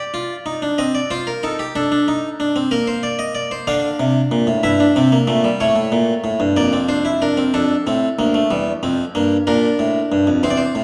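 Bathed in a resonant recital-hall reverb, this serious, solemn short extract from a longer baroque-style three-part fugue in 6/8 features a solo Flemish-style harpsichord, up front and plucked with a round tone from a single set of strings, spanning from deep bass to its upper register before a brief new section begins at 7.5 seconds.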